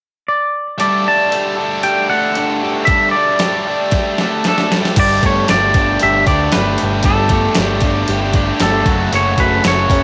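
Indie rock with an upbeat, carefree mood, this cut from a longer piece opens with a clean, twangy electric guitar carrying the melody from 0.3 s, sitting up front with a cassette-tape coloring. Two picked electric guitars soon join on riffs: one bright and distorted with overdrive, the other compressed and warm with a lush chorus. A crisp 8-bit drum machine drives the band with a thumpy kick, a fat snare, hi-hat and crash, sounding re-recorded in a small room and likewise touched by cassette tape. After a drum fill, a growling picked bass with overdrive enters at 5.0 s to anchor the second section. The harmony rests on Gsus2 before moving to F#m at 8.9 s, all within a homespun cassette recording with light reverb.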